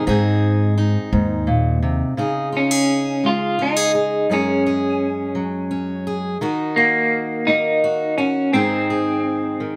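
A twangy, slightly broken-up electric guitar through a small old amp carries the tremolo-laced melody from 2.6 seconds in this nostalgic, hopeful acoustic folk-pop ballad in 6/8, over up-front fingerpicked steel-string acoustic guitar and a woody, thumpy pizzicato upright bass that plays only until 2.0 seconds, moving through Ab, Dbsus2, Gbsus2 and Ebm in moderate studio reverb in a short cut from a longer piece.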